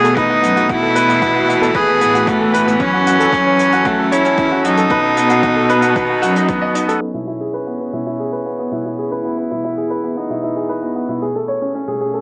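Heard through a lush hall reverb and a filtered, small-speaker sound, this cinematic, moving piano and strings electronica fragment sets a biting, earthy solo cello melody and a clear, up-front baby grand riff over a reedy, gut-string quartet's sustained chords, a symphonic cello section bass with sidechain pumping that stops at 6.7 seconds, distant brushed jazz drums, and a punchy electronic kick in the background, with a filter sweep running through the second half from 7.0 seconds.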